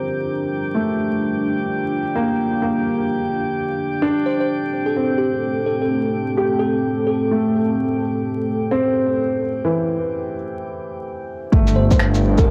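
A woody upright piano and a deep, warbling ambient pad, both pumping with sidechain, open this nocturnal, melancholic future garage cut from a longer piece, with glassy drifting overtones overhead and a bell-like FM electric piano melody through phaser and tape echo from 4.3 s, before a brief break gives way at 11.5 s to a menacing detuned saw bass and an overdriven kick, joined at 11.7 s by muffled, pitched-down shaker and finger snaps, all on a cassette home recording with vinyl crackle.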